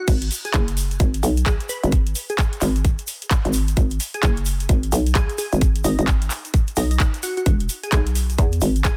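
A glassy wavetable pluck opens alone, its detuned, chorused melody trailing dub echo, before a hollow, knocking FM bass with overdrive and sidechain pumping lands with a tight, up-front electronic kick, a garage kit of handclaps, metallic hats and crash, and a grainy egg shaker at 0.1 seconds, driving a gritty, swaggering bass house drop at 130 BPM in G# minor with a shuffling 16th-note swing, dry and close, moving from G#m7 to E at 7.5 seconds in this cut from a longer piece.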